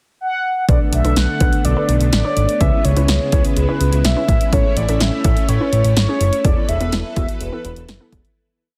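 A mellow, horn-like synth lead with chorus, delay and vibrato opens this cool, nocturnal synth-pop piece at 0.2 s, sounding hook phrases in B dorian over a pickup bar. At 0.7 s a punchy, overdriven analog drum machine and a fat, up-front sequenced bass kick in with a straight 125 BPM beat, joined by a warbling, lo-fi pluck playing dark, syncopated close-voiced chords and a shimmering vintage string machine pad. The short verse moves through Bm7, C#m7, A and Esus4 under light reverb and a dense, heavily limited master, then fades out from 6.4 s to 8.4 s.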